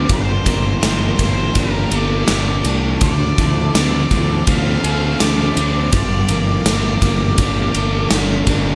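A steady, straight 4/4 pulse at 82 BPM is driven by a gated 80s drum kit, its punchy kick, medium-tuned snare and bright ride cymbal sitting up front in a bright stone room sound, alongside a dark, round fuzz fingered electric bass that is also placed up front. This short excerpt of rock blending shoegaze and dream pop feels dreamy and melancholic, moving through Gm7, Dm7 and back to Gm7 over its 8.8 seconds. Two warm overdriven guitars play riffs in the background, a crunchy one trailed by reverse reverb and a semi-hollow one with a hollow-body tone and subtle chorus. Above them, an octave-fuzz lead guitar carries a distorted melody with slapback echo, stopping at 8.1 s. Very quiet beneath it all, a vintage sawtooth string machine voiced as violins holds soft-attack chords with ensemble chorus, while a boxy, octave-doubled twelve-string acoustic guitar picks shimmering arpeggios, the whole set in a small room with some lossy compression artefacts.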